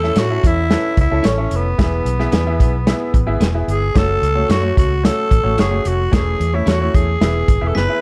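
Uptempo 1960s-style soul in A major at 111 BPM, warm and uplifting, with a raspy, growling tenor saxophone carrying the melody up front over a woody, brilliant upright piano, a dark, foam-muted fingered electric bass and a tight soul drum kit with a pumping room sound. A slightly broken-up electric guitar adds picked stabs in the background, while the chords move from A through E and F#m to A/E and back to E. A sparkling, bell-like glockenspiel enters on a single high note at 7.7 seconds, just before a drum fill lands at 7.8 seconds, and then this fragment of a longer piece cuts off.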